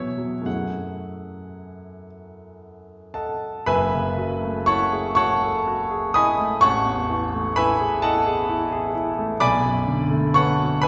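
A slow, rubato lilt in 6/8 carries this mysterious, hazy fragment of impressionist solo classical piano, where an intimate, up-front concert grand with deep bass and audible action noise drifts from F#m9 through Amaj7 at 6.6 seconds to Bm7 at 9.4 seconds, its polished tone bathed in the wet reverb of a recital hall.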